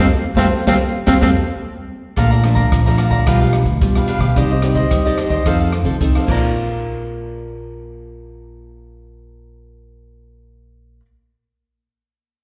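Heard through a venue's PA in a recital hall with a moderate plate reverb, this brief, sunny cut from a longer samba and choro piece moves at 110 BPM in Bb major. A clear, vintage clarinet in classical style opens with a short solo phrase on C4 that ends by 1.3 seconds, with slapback echo trailing it as the band strikes an accent. A crisp, picked cavaquinho and an up-front, fingerpicked nylon-string guitar, its finger squeaks audible, carry the accompaniment throughout, both touched by slapback echo. Beneath them, a woody, thumpy pizzicato upright bass on gut strings anchors the low end. An open jazz kit, dark and smooth with a boomy kick, a medium-tuned snare, rim clicks, hi-hat and crash, sits up front from 0.4 until 6.4 seconds, and the joyful harmony travels from Fadd9 through Bbmaj7, G7/B, Cmadd9 and F7 before settling on Bb.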